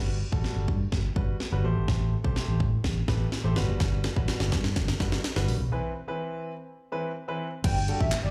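Opening on a warm concert grand piano with deep bass, action noise and slapback echo, pumping alongside a round, foam-muted fingered electric bass over Gmaj7, Am7 and Cmaj7 chords, this carefree, euphoric dance-pop build-up brings in a punchy, tape-warm house kit of cracking snare, handclaps, hi-hat and crash at 0.3 seconds, rolls through a drum fill into a break at 5.7 seconds, and lets an airy, dreamy detuned lead with chorus and vibrato enter at 7.6 seconds, all heard live through a club PA with reverb.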